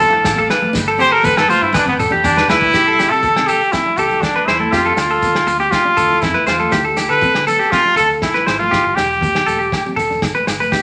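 A straight 4/4 groove at 120 BPM drives this warm, danceable highlife guitar band excerpt in C major, where a clear, punchy trumpet with light vibrato and scooped notes takes an up-front solo over a bright, clean, compressed semi-hollow electric guitar playing arpeggios, a full-bodied picked dreadnought acoustic guitar, a round foam-muted fingered bass, a muffled lo-fi soul drum kit entering at 0.2 s with a fill from 1.7 to 2.7 s, very quiet congas, grainy distant maracas and ringing agogo bells, while a buzzy vintage combo organ holds chords only until 2.7 s, all set in a wet large studio reverb.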